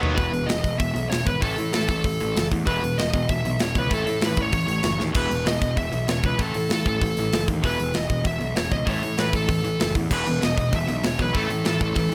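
Energetic and upbeat, this straight-feel punk rock excerpt drives a bright, overdriven stack-guitar riff over growly fuzz bass and a polished, up-front acoustic drum kit with bright cymbals, a tight kick and fills at 0.0 and 5.0 seconds, while a dark, smooth lead guitar with delay carries the melody from 0.2 seconds and a distorted second guitar sits in the background, returning at 10.1 seconds, in a dry mix that moves between E5, A5 and A chords.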